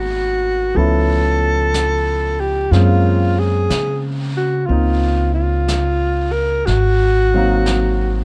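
Jazz ballad at a slow 61 BPM with a melancholic, wistful swing feel, in which a breathy, up-front alto saxophone with light vibrato and a soft attack carries the melody over clear concert grand piano accompaniment with deep bass, a woody pizzicato upright bass, and a vintage brush kit that enters at 0.7 s with a mid-forward, rolled-off snare and hi-hat, set in a dry, dark production cut from a longer piece.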